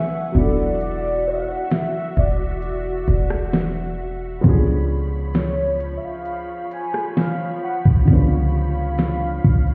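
A deep, boomy 808-style bass arrives at 0.4 seconds just after a soft-kicked, fat-snared electronic drum kit in this late-night, longing contemporary R&B excerpt at 66 BPM, where a velvety sawtooth synth lead with chorus and delay carries the melody over a mellow felt-muted upright piano with audible action noise and a lush bowed string section, all heard muffled as if through a wall inside a stone-room reverb.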